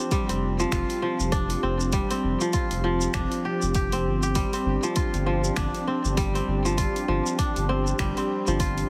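Through a heavily compressed, radio-like sound with light reverb, this meditative, mystical organic downtempo piece cut from a longer work moves at 99 BPM in 4/4 with a swung sixteenth feel on an Fsus2 chord, as a bright, crisp fingerpicked kora plays ringing arpeggios through tape echo up front. A smooth, detuned vintage analog pad holds sustained chords with chorus and sidechain pumping, and a deep electronic kick and a house kit of finger snaps, hi-hat and shaker, both re-recorded in a small room, keep time. A round, dark analog bass enters at 0.3 seconds.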